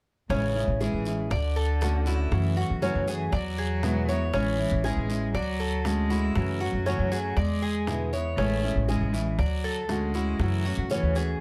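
Warm and relaxed, this short cut from a longer Cuban son and guajira piece sets a fingerpicked classical nylon-string guitar, full-bodied with the odd finger squeak, beside a bright, metallic Cuban tres picking arpeggios on its doubled strings over a cycling Amaj7, Dmaj7, F#m7, E7 progression. A single bowed cello adds an expressive second line with vibrato, soft attacks and portamento, while a woody, thumpy pizzicato upright bass on gut strings sits dark and up front. Tight, high-tuned bongos played with soft hands stay close and dry in the background, a raspy guiro scrapes along beneath, and a light reverb rounds out the sound.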